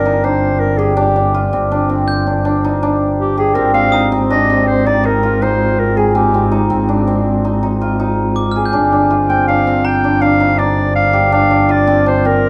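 Contemporary chamber music in an uneven 7/4 meter, this shimmering, restless excerpt sets a soft-attacked, classical-style solo clarinet melody, distant and roomy yet up front, over ringing, hammered cimbalom arpeggios. A bright, focused double bass, bowed with vibrato by one player, holds the low end close, while a glockenspiel struck with brass mallets adds metallic, bell-like sparkle in the background from 2.1 to 10.5 seconds. The harmony moves from Gm7 to Ab and back, set in a moderate recital hall reverb with a dark, warm production.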